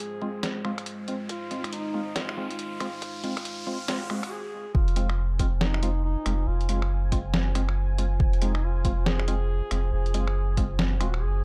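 A dark, lightly reverberant mix carries this brooding deep dubstep excerpt in a swung half-time feel, where a mellow duduk sings a solo, scooped folk-style melody through dub echo over a detuned sawtooth pad and hollow, chorused organ stabs, while muffled, pitched-down sampler drums with finger snaps and an overdriven electronic kick play through the build-up under an electronic riser until a short break at 4.3 seconds gives way to a drop at 4.7 seconds, where a round, soft sub bass enters up front.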